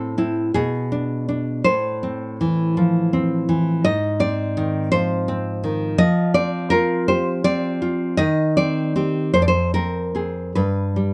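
A lone nylon-string guitar, fingerpicked and full-bodied, opens this brief, intimate passage from a longer romantic piece for solo classical guitar, moving through a wistful, rubato 6/8 over 11.1 seconds. The harmony drifts from A minor through darker chords such as A-flat, C minor and F minor before settling on G. Close, detailed microphones place the guitar up front in a light reverb.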